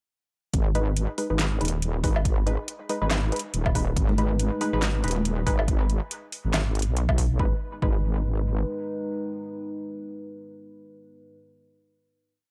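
Cavernous and brooding, this short deep dubstep piece in G# minor rides a half-time 140 BPM groove with a swung feel, opening at 0.5 seconds on a drop built around an up-front wobble bass of long, dark, saturated notes with chorus, a punchy overdriven electronic kick, and an overdriven deep house kit of fat snare, metallic hats, handclaps and woodblock. Muted, detuned dub chord stabs hit off-beat chords through dub echo, while a moody, wave-folded analog pad with lush chorus enters at 4.0 seconds and distant, high-tuned congas echo briefly in the background. As the drum kit drops away, the piece settles on a final chord from 7.4 seconds, its dry, gritty hardware sound carrying transformer saturation in a digital ambience.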